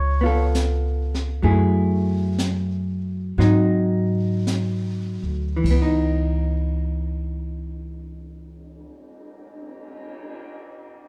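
A dark, clean hollow-body jazz guitar sits up front in this smoky, wistful jazz ballad excerpt, playing picked accompaniment over a woody pizzicato upright bass, while a mellow flugelhorn with vibrato and scooped notes sounds only for the opening 0.5 seconds. A brushed drum kit with a rolled-off top, a high-tuned snare and a boomy kick enters at 0.5 seconds, and the swung 4/4 pulse slows through the first 5.6 seconds before settling on a minor ninth chord. A wet studio reverb gives the recording a sense of the room around it.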